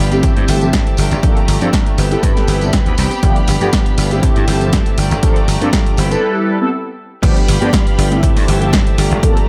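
An echo-heavy mix with light reverb carries this sunny, funky filtered disco house excerpt at 120 BPM in G mixolydian, built around an up-front analog electronic kick while bass, guitar, brass, strings and tambourine pump under a low-pass filter. A bright slap bass and a clean, compressed, direct-recorded guitar riff with vintage 12-bit sampler grit and analog delay move over Fmaj7/G, Bbmaj7/G, Am9/G and G7 chords. Round, detuned sawtooth synth brass with chorus and phaser fills the middle, a lush, distant violin section holds sustained chords in the background, and a punchy drum machine adds snare, hi-hat and crash. A small-room tambourine of shaker and handclaps sits far back until it stops at 6.2 s for a short break, and the drop lands at 7.2 s.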